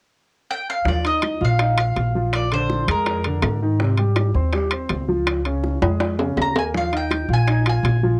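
Afro-Cuban jazz at 163 BPM in 4/4 with a straight feel, set in Eb major, danceable and sophisticated in mood, heard as a short cut from a longer piece. A bright, picked mandolin with doubled strings carries the melody up front, entering at 0.5 seconds, pausing after 3.6 seconds and returning at 6.4 seconds, its tone coloured by cassette tape. Beneath it, a dark, thumpy pizzicato upright bass with steel strings sits prominently, joined by a concert grand piano with deep bass and a natural, warm character, also tinged by tape, comping through Ebsus2, Bb7, Abmaj7, Db and Ebadd9. The percussion pairs ringing metal-shell timbales, close and dry up front, with round, low-tuned bongos further back in a live room and very quiet, woody claves, and a drum fill arrives around 5.8 seconds. The whole has the intimate feel of a home cassette recording in a small booth with a short ambience.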